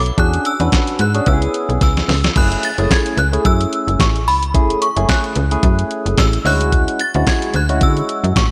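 An early-eighties boogie funk excerpt opens with a chiming, inharmonic FM synth chime carrying the melody high up, dressed in ensemble chorus, phaser, tremolo and slapback echo, over a snappy slap-like FM bass with a metallic attack that sits up front. A clean 12-bit drum machine enters at 0.1 seconds with a thumpy kick, fat snare, hi-hat, handclaps and crash cymbal, and a barky tine electric piano follows at 0.2 seconds, bright and clean through a combo amp with its own phaser and slapback echo. At 110 BPM in 4/4 with a light sixteenth-note swing, the groove feels danceable and funky in F# minor, moving from E13 and C#m7 to F#m9 and later Dmaj9#11. A drum fill leads into the turn at 2.4 seconds, where the opening section repeats. Light reverb leaves the sampler-style drums and digital bass punchy and close.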